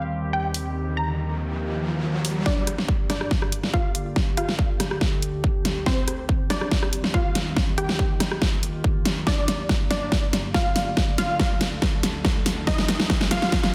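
A huge, up-front snare leads the dubstep drum kit, with hi-hat and rim click, entering at 0.5 seconds in this heavy, menacing half-time wobble dubstep excerpt at 141 BPM in G minor. A punchy, overdriven electronic kick joins at 2.5 seconds as a build-up and drum fill run to the end, while a lush, detuned sawtooth unison pluck carries the melody with delay and an evolving, warbling, mellow wavetable pad sustains chords with chorus, reverb and sidechain pumping through Cm/Eb, Ebadd9, Gm and Dsus4. A background riser appears twice, and the dense, heavily limited mix sits in a moderate digital room reverb.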